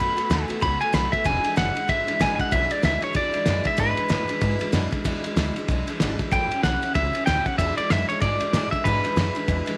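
Upbeat and retro, this swinging rockabilly excerpt opens with a twangy, slightly broken-up electric guitar carrying the melody, taking a solo in its opening 1.3 seconds, bathed in tape echo and sitting up front. A bright, full-bodied picked steel-string acoustic guitar picks out the accompaniment while a woody, thumpy pizzicato upright bass on gut strings plays through dominant seventh chords. From 0.2 seconds a cloth-damped drum kit adds a muffled, gritty pulse of tight kick, fat snare and dark ride cymbal, all under a light reverb.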